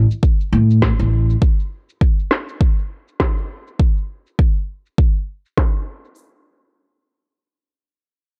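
A dark, thumpy upright bass, plucked on gut strings with a sidechain pumping effect and a filter sweep, sits up front in this mystical, warm organic downtempo excerpt at 101 BPM in 4/4 with a 16th-note swing, though it plays only until 1.3 seconds. Electronic cabasa and a woody snare enter at 0.1 seconds, their percussion, hats and snare low-pass filtered and swept, and a deep, layered electronic kick follows at 0.2 seconds. The dry, gritty hardware recording carries a second section from 6.2 seconds.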